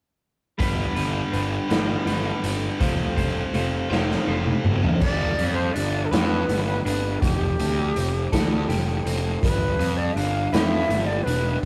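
A slow 6/8 sway at 54 BPM in G mixolydian carries this restless, bittersweet quiet-loud alternative rock fragment, where a gritty garage drum kit and an up-front fuzz bass anchor a clean guitar's tremolo-laced arpeggios, a scooped high-gain guitar riff grinds through a drum fill at 3.9 s until 5.0 s, and from 5.0 s a breathy, bright shakuhachi takes the melody with vibrato, the whole band heard in a rough small-room rehearsal sound.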